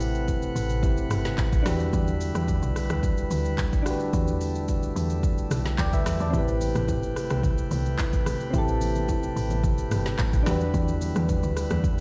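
A straight 4/4 amapiano groove at 109 BPM drives this hypnotic, soulful passage, led by an up-front electronic afro-pop kit with a deep kick, woody snare, crisp hats, handclaps, rim clicks and shaker, all roughened by vintage 12-bit sampler grit, over a punchy, mellow log drum bass with a fast, percussive attack. Soft, round electric-piano-like synth keys with chorus and a light, bright chamber organ of sparkling flute stops with a touch of chiff and sidechain pumping move between Am9 and Em7 in A dorian. Very quiet congas and bongos with soft hands enter at 6.3 seconds, and the track sounds as if played through a big sound system in a bare room with stone-room reverb.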